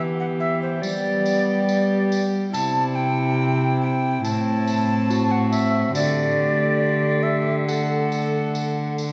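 In a straight 4/4 pulse, this courtly, stately renaissance-style consort dance, cut from a longer piece, sets an airy, chiffy tenor recorder melody with vibrato up front over a reedy gut-string viola second line, a soft-attacked, close-miked trombone accompaniment and a rich, nasal bowed cello bass, with a jingly vintage tambourine joining at 0.8 s, heard from further back in a wet church reverb as the harmony moves from Em through G, C and Am to Dsus4.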